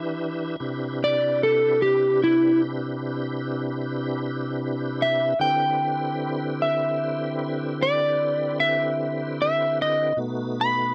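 A soulful, mournful slow blues in 12/8 at 50 BPM, cut from a longer piece, where a dark, slightly broken-up electric slide guitar played with fingerpicks carries the melody up front over full, lightly overdriven tonewheel organ chords, also up front, sounding through a slow rotary speaker with chorus vibrato, moving from Em7 to a long Cmaj7 before reaching B7 at 10.2 seconds, in a dry, close 1970s-style studio sound with light reverb.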